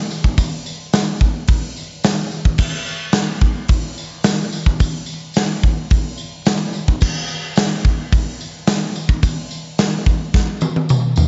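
A big, polished rock drum kit sits up front, its punchy kick, medium-tuned snare, bright cymbals, hi-hat and toms keeping a straight 4/4 beat before a drum fill at 10.3 seconds. A jingly tambourine plays distantly in the background, as if from a large room, adding to the blissful, dreamy mood. The mix is soaked in lush hall reverb with vinyl crackle and a softened top end, and this short passage is cut from a longer rock piece.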